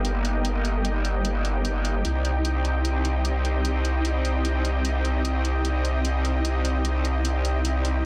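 A dense, heavily limited modern master with digital ambience frames this menacing excerpt of heavy wobble dubstep, moving in a swung, half-time feel over a shift from Eb/G to Cm at 2.0 seconds. Up front, a growling, saturated bass wobbles through a formant filter with chorus and overdrive, while a lush supersaw pad of detuned sawtooth layers and a sub octave sustains bright chords behind a low-pass filter. An overdriven, layered electronic hi-hat, re-recorded in a small room and darkened by low-pass filtering, ticks beneath until 7.9 seconds.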